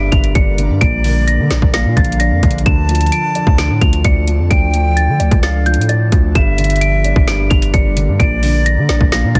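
Melancholic and eerie, this short trap excerpt moves with a heavy half-time feel over a dark minor progression that circles from G minor through B-flat to D minor and back. A small celesta carries the melody high up, its bell-like, sweet tone softened by felt hammers and a band-limited, vintage quality, with tape echo trailing behind it. A breathy silver concert flute plays a second line beneath it, close-miked with a straight, tongued tone and its own tape echo, while a dark baby grand piano supplies boxy, intimate accompaniment with short sustain and audible action noise. A granular cloud pad enters at 0.1 seconds, holding blurred, detuned chords that evolve slowly in the background within its built-in reverb. Up front, a hard-hitting 808-style bass with a fast attack and a noise layer drives the low end alongside an electronic trap kit of hard-clipped kick, woody snare and metallic hi-hats, all set in a dry, dense and heavily limited modern master.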